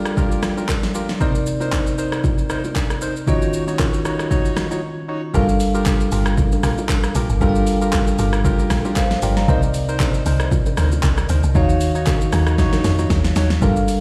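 The woody, punchy log drum bass arrives at the drop at 5.3 s, its fast-attack, decaying notes sitting low and mellow under this deep, soulful amapiano cut taken from a longer piece, set in G minor at 116 BPM in 4/4 with a 55% swing on the sixteenths. Before it, a bell-like tine electric piano carries the accompaniment from the start, its bright, clean tone moving through Gm7, Cm7 and Ebm7. A percussive organ stab adds hollow, quickly decaying hits coloured by chorus and delay. The electronic deep house drum kit stays up front with a deep kick, a fat snare, handclaps, hi-hat, rim click and shaker, all with a warm tape character, while very quiet acoustic bongos and congas played with soft hands add bright detail. A short break at 4.8 s sets up the drop, and a drum fill at 12.6 s marks the closing bars. The whole track sounds as if played on a big sound system in a bare stone room, with a light reverb around it.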